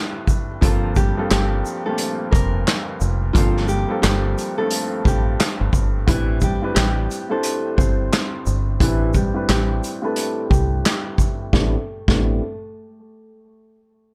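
A punchy vintage drum kit sits up front in this dark, moody boom-bap hip-hop excerpt at 88 BPM in A phrygian, its kick, medium-tuned snare, handclaps, hi-hat and shaker swung and pumping in a small room with a rolled-off top, while a deep dub fingered electric bass, round and foam-muted, joins at 0.6 seconds. A woody upright piano with audible action noise, long sustain and a cassette-tape tinge holds down the Am11 and Gm11 chords, and a fingerpicked nylon-string guitar carries the melody through digital delay. A filter sweep runs from 6.1 to 11.5 seconds, and the whole mix stays dry.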